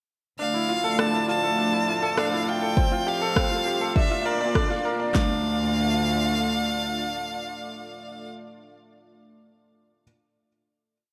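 Intimate and cinematic, this short piano-and-strings electronica piece opens with a close, clear solo violin singing a motif-based melody with vibrato over a brilliant grand piano's eight-step arpeggiated sequence and a reedy, gut-string chamber cello section holding sustained roots with sidechain pumping. A thick, detuned unison pad with chorus and phaser swells in slowly beneath them, carrying a filter sweep through the build-up that ends at 5.1 seconds, while an overdriven electronic rim click keeps a restrained pulse and an up-front deep house kit adds a four-on-the-floor deep kick, punchy snare and claps from 2.8 seconds. Everything settles onto a final D minor chord in a lush hall reverb, with the piano continuing alone until 10.0 seconds.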